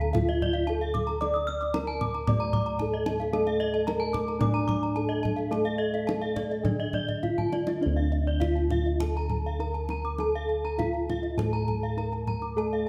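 Balinese gamelan in D pelog at 101-113 BPM, brilliant and ceremonial, cut from a longer piece. A bronze metallophone carries the melody with padded disc mallets, mellow and shimmering in a boxy room, over bright, round bossed gongs up front in the bass, while two wooden-mallet metallophones spin arpeggios, one close-miked and dry, and a deep, compressed, saturated kendang played with hard hands drives the pulse. A horn-mallet metallophone adds an airy accompaniment from 3.3 to 7.8 seconds and returns briefly at the very end, a drum fill at 7.1 seconds ushers in the second section, and a recital-hall reverb lends the ensemble a lingering sheen.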